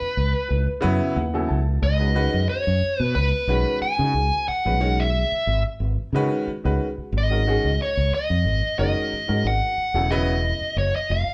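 A live band in one large studio room, with moderate reverb and a faint mains hum, plays this intense, funky electric jazz fusion cut from a longer piece, moving in a lightly swung 4/4 over F#m7, C#9sus4 and G#9sus4 chords. Up front, a dark, smooth overdriven lead guitar picks out the melody while a fretless electric bass, direct and amped with a warm tone, holds the low end. A brilliant, slightly worn baby grand piano with audible action noise comps intimately, opening with a fill from 0.5 to 1.8 seconds.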